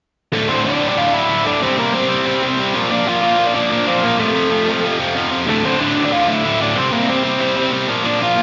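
From 0.3 seconds, a double-tracked, up-front distorted electric guitar riff and a biting, picked lead guitar melody charge together through this angry, urgent punk fragment, both overdriven with slapback echo and captured at a live gig through the venue's PA, with recital-hall reverb and the highs shaved off.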